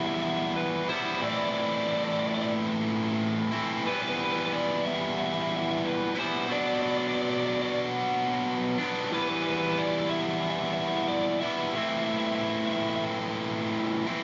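A biting, overdriven lead guitar carries the melody in this cinematic, cathartic rock passage at 91 BPM in E minor, singing high over chords moving through Em, Am and Bm before dropping out at 13.0 s. Beneath it, a tight, double-tracked distorted rhythm guitar sits up front with a bright, picked riff that carries on alone until the cut at 14.2 s. The pair sound like a band playing live in a wet stone room, with a reverberant space and a dark, capped top end, in this fragment of a longer piece.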